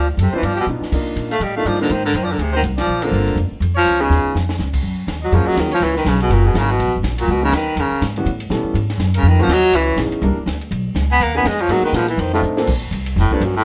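This is small-group jazz in a swing and bop vein, playful and relaxed, swinging briskly in 4/4 and taken from a longer piece. A warm baritone saxophone carries the melody up front with vibrato, soft attacks and scooped notes, giving it a vintage jazz voice. Behind it, a clear trumpet plays a second line with light vibrato, sitting in the background until it drops out at 12.4 seconds. A woody, dark pizzicato upright bass on steel strings holds the low end up front. A warm upright piano with long sustain comps through colorful extended chords, while a compact cocktail kit with dark cymbals, a high-tuned snare and a punchy kick adds dry fills, including one at 4.1 seconds, just before the harmony settles into a new key center at 4.8 seconds. The band plays live in one room with moderate reverb, and a full-band accent lands at 2.8 seconds.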